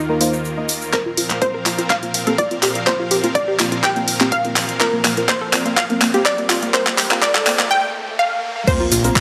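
A punchy, detuned unison pluck carries the melody in this hopeful, expansive progressive house excerpt, entering at 0.9 s over a lush supersaw pad, a round analog pluck playing arpeggios and a warbling, vintage chord stab with cassette tape colour, these three pumping under sidechain. A grainy egg shaker opens the excerpt before the build-up. A tape-warm house kit up front with crash, handclaps and hi-hat, a deep overdriven kick in the background and a background riser drive a build-up with a drum fill and filter sweeps on the pluck and stab, moving from Ebsus2 to Bbsus2. After a break at 7.7 s, an impact at 8.7 s brings back the shaker and a brief hit of fat, thick analog bass, all bathed in a lush hall reverb.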